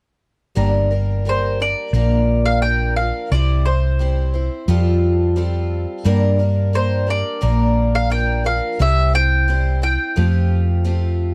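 Over a straight, steady four-beat pulse, this reflective, wistful folk rock and heartland rock fragment pairs a bright, shimmering, octave-doubled twelve-string acoustic guitar, with audible finger squeak, and a dark, punchy hollow-body electric bass up front, before a warm, double-strung picked mandolin takes the melody from 1.3 seconds over a cycling Gm–Bb–C–Fadd9 progression, all captured in a dry, close 1970s-style studio sound.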